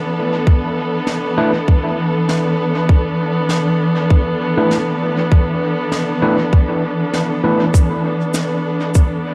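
A dark, bowed string section sits up front from the very start, holding smooth-topped sustained chords over an E7sus4 with expressive vibrato, setting a hazy, spacious ambient dub mood at 99 BPM with a gentle 16th-note swing. A tight, tape-warm electronic kick enters at 0.5 seconds, joined by a brushed snare and cabasa with a natural small-room sound treated with dub echo, while a barky, gritty overdriven tine electric piano drops echoing stabs from the background through a combo amp between 1.4 and 7.6 seconds. This short excerpt, cut from a longer piece, carries an echo-heavy mix with light studio reverb.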